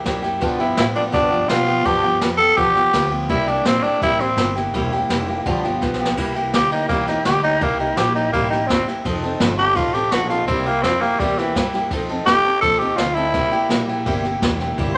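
A straight 4/4 at 167 BPM sets this upbeat, retro rockabilly cut in C mixolydian, with a bright, full-bodied picked steel-string acoustic guitar up front, a woody, growly pizzicato upright bass and a brushed jazz kit with dark cymbals and a boomy kick, all in a moderate large studio reverb. A raspy, gritty tenor saxophone with light vibrato carries the melody from 0.6 seconds, and after a drum fill at 5.8 seconds it takes a growling solo over C7 and F7 changes until the excerpt ends at 15.0 seconds.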